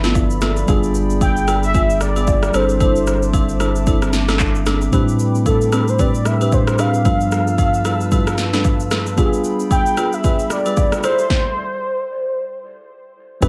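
A swung 16th-note groove at 113 BPM in 4/4 drives this hypnotic, late-night amapiano excerpt, built on an overdriven, up-front deep house drum kit with a deep kick and punchy snare, along with agogo bells and woodblock in a live room and a round sine sub bass that holds G1 until 4.9 s. A velvety, vibrato-tinged synth lead with chorus and tape echo carries the melody over a clean tine electric piano, a dark, flute-like pad in the background, and soft, detuned chord stabs, as the harmony moves through rich chords such as G13, G7b9, C69/G and Am11. At 13.4 s a bouncy, hollow log drum bass punches in on A1, set against a digital ambience.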